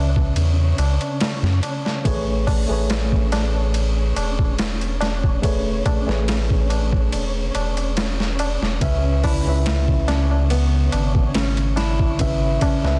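A worn, slightly out-of-tune tine electric piano, overdriven and run through tremolo and tape echo, opens this hypnotic, cinematic trip hop excerpt in C# minor at 71 BPM alongside a deep, nasal analog bass sitting up front, moving from C#m7 to Amaj9. A flickering, granular texture drifts in the background while a gritty, pitched-down boom bap kit with a thumpy kick and high-tuned snare swings lightly over short-ringing tabla. At 8.8 s, as the harmony returns to C#m7, a full-bodied fingerpicked nylon-string guitar adds echoing arpeggios, all under light reverb, vinyl crackle and a dense, heavily limited master.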